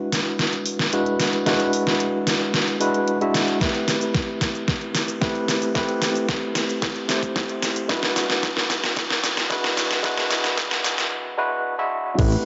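This nu-disco excerpt opens on a bright, clean tine electric piano, sidechain pumping and analog delay giving its chords a sensual, cosmic lilt as they move from E9 to Am9 and back. A pop drum kit enters almost at once with cabasa, hi-hat, crash cymbal and a deep, overdriven snare, pushed up front in a long drum fill across a build-up in straight 4/4. At 3.6 seconds a knocking electronic kick joins, layered and overdriven like the kit, both sounding re-recorded in a small room. After a brief break from 11.1 seconds, a fat, detuned sawtooth bass lands on a single low A at 12.2 seconds, its filter sweep and fast attack arriving just as the passage cuts off. A wet plate reverb surrounds the parts, while the gritty cassette-tape character and trimmed top end give the whole a dusty, hardware feel.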